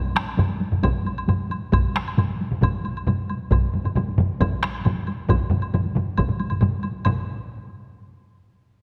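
Japanese traditional taiko drum ensemble music, powerful and driving at 135 BPM in a straight 4/4, this short excerpt layers four taiko parts (heavy-stick drums close and up front, hard-stick drums dry, one set back in the background) with a woody, dry woodblock entering at 0.3 seconds, all speeding up throughout inside a wet concert hall reverb before a brief new section from 7.1 seconds.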